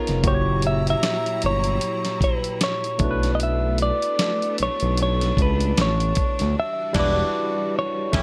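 Smooth and sensual, this neo-soul R&B fragment swings in 4/4, with a clean, fingered electric guitar carrying the melody through a slapback echo over a barky, lightly overdriven tine electric piano and a distant, lush string section holding sustained chords. Up front, a gliding sawtooth-and-triangle synth bass with portamento and vibrato joins at 0.1 s alongside a gritty, sampler-style drum kit with a thumpy kick, while the harmony moves from F#7b9 to Bm11. At 6.6 s the drums play a fill under a band accent as the chords reach Em9, all in a dry, close-sounding room.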